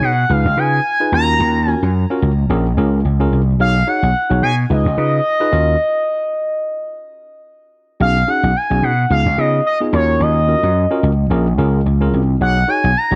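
A smooth, full-bodied synth lead sits up front in this slick, danceable slice of early-eighties boogie funk. Its mellow sawtooth-and-triangle tone has a fast attack and sustained notes, and it is colored by vibrato, portamento, chorus and a slapback echo over a lightly swung 4/4 feel. Beneath it, a punchy, amped electric slap bass anchors the low end as the loudest part. A worn, slightly out-of-tune tine electric piano, clean through a combo amp, supplies the chords, moving through Db9, Ebm7, Bbm7 and B6. The harmony breaks into a stop at 5.8 seconds, and the opening section returns at 8.0 seconds before this passage, taken from a longer piece, cuts off at 13.2 seconds under a light reverb.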